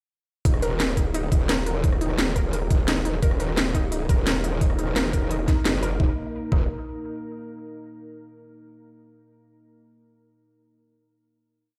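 At 173 BPM in straight 4/4, an overdriven, knocking electronic kick sits up front beside a tight drum and bass kit of cracking snare, rim clicks and crisp closed hats, driving a short, futuristic and aggressive dark technical drum and bass piece that drops at 0.5 seconds and ends on a final chord from 6.0 seconds. Underneath, a growling, distorted bass with chorus wobbles through modulated phrases of changing wobble speed, while a warbly, dusty lo-fi pluck with chorus, delay and sidechain pumping loops a five-step arpeggio that drifts against the bar. From 4.2 seconds a deep, moody sawtooth pad with chorus, reverb and sidechain pumping holds sustained chords, all heard as if played on a big sound system in a bare room with large studio reverb.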